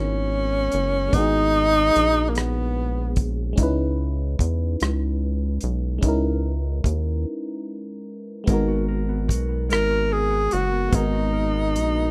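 A rough home-demo mix with light reverb frames this sultry, late-night R&B excerpt, a slow six-eight groove at 49 BPM in G# minor that moves from G#m9 to C#m9 and back. A breathy tenor saxophone carries the melody up front, with vibrato, a soft attack and scooped, jazz-style notes coloured by a slapback echo. It drops out after 3.3 seconds and returns at 9.7 seconds. Underneath, an FM electric piano with a chorus effect plays glassy, bell-like chords that warble with a vintage character. A rubbery, nasal square-wave bass bounces up front beside a damped 70s drum kit, whose dry, tight kick, hi-hat and rim click sit under a rolled-off top. After a short break, a dark, clean, fingered electric guitar slips in at 8.5 seconds as a quiet second line.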